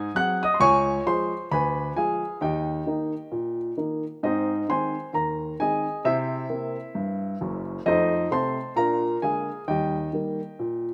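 Stride piano jazz in a swinging, playful mood, this short piece moves at 132 BPM in 4/4 with a lilting swing on the eighth notes, set in Ab major. A single grand piano carries the whole performance alone from 0.0 to 10.9 seconds, ranging from Gb1 down low up to Gb6. The instrument sits up front with an intimate, natural character, and the mechanical sound of its action can be heard under the notes. An echo chamber reverb of moderate size surrounds the piano, lending a sense of space around the close sound. The harmony travels through seventh and diminished chords, with a new section beginning at 4.2 seconds that steps through C7, F7 and Bb7 before settling on Eb, and the recording is cut from a longer piece.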